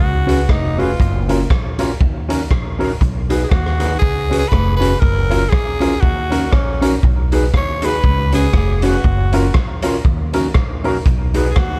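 Joyful, cheerful ska with a light swing, cut from a longer piece and cycling through C#7sus4, F#maj7, D#m7 and B6. A raspy, close-miked tenor saxophone carries the melody with vibrato and scooped notes, while a woody upright piano with audible action noise plays stabs; both carry tape echo. A growly pizzicato upright bass sits under a clean, fingered electric guitar that enters at 0.3 seconds with the gritty, up-front drum kit, whose punchy kick, hi-hat and rim click sound saturated in a bright stone room, all within light reverb.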